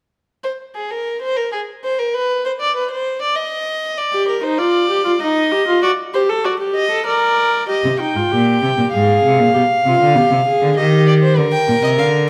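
Classical baroque-style fugue for string quartet in 3/4, serious and driving, heard as a short portion of a longer piece in a moderate recital hall. A nasal, airy-bowed violin opens alone on the second line, joined by a close, reedy viola at 4.1 seconds and a rich cello bass at 7.8 seconds, every part played on gut strings in period style. Near the end, at 11.5 seconds, a second violin carries the melody up front with light vibrato.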